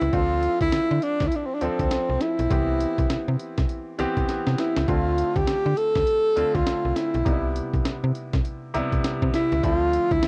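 Confident and punchy, this swung new jack swing R&B excerpt sets an intimate, breathy tenor saxophone with dark subtone, vibrato and scooped notes, touched by analog delay and cassette grit, over a polished baby grand piano, a snappy FM bass with a metallic attack, and a gritty, compressed breakbeat-style kit with a thumpy kick that breaks into a fill at 4.3 seconds, all moving between Dm7 and Cmaj7 in a softly reverberant home-tape sound.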